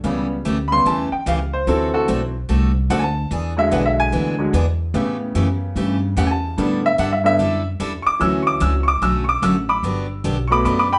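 A cheerful, down-home country excerpt opens with a bright upright piano taking the lead, its brilliant, polished tone riding over a swung groove, while a picked steel-string acoustic guitar with fresh, full-bodied strings and a woody, thumpy pizzicato upright bass accompany it throughout. The trio sounds like a band playing live in one room, bathed in wet studio reverb. Dominant-seventh chords give way to a sus4 and then major-seventh harmonies from 8.2 seconds, before the clip ends at 11.0 seconds as part of a longer piece.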